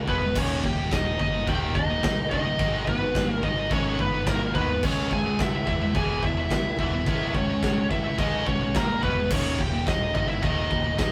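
Dark and heavy, this short heavy metal excerpt in straight 4/4 puts a distorted high-gain lead guitar up front, carrying the melody over a smooth, overdriven second lead line further back. Behind them, two bright high-gain rhythm guitars, one of them scooped, play the riff alongside a round, direct picked bass. A big acoustic rock kit sits forward with a punchy kick, a medium-tuned snare, and crash and china cymbals, heard through light reverb in a rough rehearsal-room recording.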